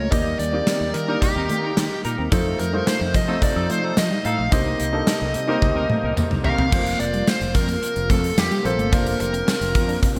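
A dark, smooth lead guitar carries the melody up front, its picked, overdriven tone trailed by delay, in this glossy, nostalgic slice of 1980s-style pop cut from a longer piece. Underneath, a gated 80s drum kit with a punchy kick, medium-tuned snare and bright cymbals drives a straight 4/4 at 109 BPM in F mixolydian, rolling into a drum fill at 5.6 seconds as the music moves into a new section. A fretless electric bass, punchy and thickened with ensemble chorus, sits beneath a present baby grand piano accompaniment, while a swirling, detuned sawtooth pad very quietly holds sustained chords with its phaser shimmer. A very quiet, twangy electric guitar at the edge of break-up plays a riff, a tight vintage horn section adds stabs from 1.1 seconds, and a jingly tambourine joins at 2.9 seconds. The chords move from Ebmaj7 through F7 and Cm7 to Fsus4 and Bbadd9/F, all framed by a lush hall reverb and bright 1980s-style digital production.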